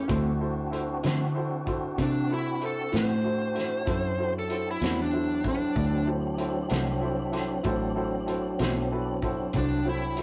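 Swaggering and gritty, this slow blues excerpt moves at 64 BPM in a straight 12/8, sitting on a D7 chord. A dark, overdriven lead guitar, picked and up front, takes a solo across the whole 10.2 seconds, its melody ranging from D4 to C5. Beneath it, a tonewheel organ holds full, lightly overdriven chords through a slow rotary speaker with chorus vibrato and audible key click, while a round, foam-muted fingered electric bass sits forward in the mix. A woody, vintage upright piano adds clear accompaniment with short sustain and drops in a fill from 6.7 to 7.7 seconds, and a compressed, slightly broken-up electric guitar through a small old amp plays tremolo-treated accompaniment in the background until 8.8 seconds. A small-room soul drum kit with a fat snare, tight kick, hi-hat and rolled-off top anchors it all in a rough rehearsal-room recording with moderate booth ambience and saturation.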